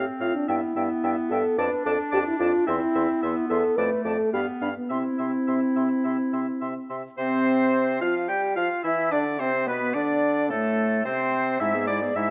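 Close, detailed microphones capture a wind quintet in a recital hall with moderate reverb, playing a spirited, graceful passage cut from a quick classical-period movement in a straight 4/4. From 0.2 s a silver, airy concert flute carries the tongued melody with vibrato. Beneath it, a clear oboe takes the second line, a smooth-topped clarinet and a mellow, soft-attacked French horn supply accompaniment, and a warm bassoon holds the bass. The opening phrase settles on C, and a new section begins at 7.2 s, moving through Csus4, Dm, Bm and Am to end on E/G#.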